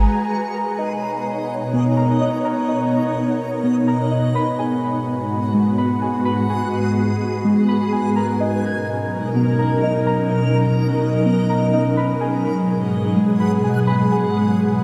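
Hip hop with a half-time feel and a blissful, dreamy mood, this cut from a longer piece sets an ethereal, mellow pad of sustained, chorused chords up front beside a bright, reversed swelling texture, while muted, felt-like synth keys with a dark, low-pass-filtered tone and digital delay play arpeggios from 0.5 s, the whole sitting in a huge ambient reverb over chords that alternate between G#m7 and Bmaj7.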